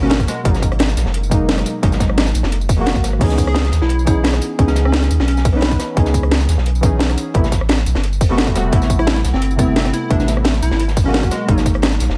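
Dry in feel, this lush, dreamy liquid drum and bass excerpt at 174 BPM in C# dorian sets a round, up-front sub bass and dark, chorused chord stabs with 12-bit sampler grit and delay over the chords G#m7, C#m7 and Am7, while a tight, overdriven electronic kick and a drum and bass kit with cracking snare and crash drive the beat, a gritty, saturated breakbeat kit sits in the background, and a bright, detuned plucky unison lead with delay sounds briefly at the start, then returns with catchy phrases at 3.5 and 9.0 seconds.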